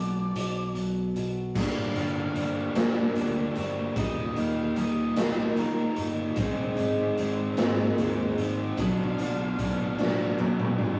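A slow 6/8 pulse at 50 BPM, counted in dotted quarters with a straight feel, opens in half time, with the raw garage drum kit entering at 0.4 seconds with a boomy kick, a medium-tuned snare, hi-hat, toms and crash, all gritty and saturated with a rolled-off top. This brooding quiet-loud alternative rock piece begins with a picked steel-string acoustic guitar sounding full-bodied arpeggios in the background, finger squeak and all, over a growly, amped electric bass. At 1.6 seconds a thick, dark fuzz guitar crashes in up front with a riff as the harmony shifts from Bm to Gm, then through Eb and Ab before returning to Bm. Threaded behind everything from the very start, an octave-fuzz lead guitar carries a distorted melody between Bb4 and F5. A drum fill from 10.0 seconds closes this fragment cut from a longer piece, all set in a rough rehearsal-room recording with small stone-room ambience and a moderate one-second reverb.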